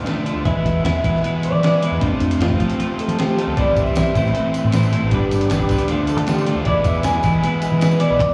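Heard as a live gig through the venue's PA, this indie rock excerpt carries recital-hall reverb and a faint mains hum, with a moody, bittersweet feel in a straight 4/4. A crunchy overdriven guitar with subtle chorus and slapback echo and a bright, twangy twelve-string electric guitar both play riffs from the start, over a growling, round, punchy fingered bass with its own overdrive. A dusty, sampler-style kit with a thumpy kick, fat snare, hi-hat and handclaps gives the groove a gritty, compressed weight. From 0.5 seconds, a slightly broken-up guitar through a small old amp carries the melody, treated with tremolo, slapback and tape echo, as a guitar solo runs through the whole passage. A soft, flute-like tonewheel organ with slow rotary shimmer adds very quiet sustained chords from 3.6 seconds, and a jingly, vintage tambourine sits in the background from 3.8 seconds, all over changes moving through E, F, C, Am, G, Dm and back to E.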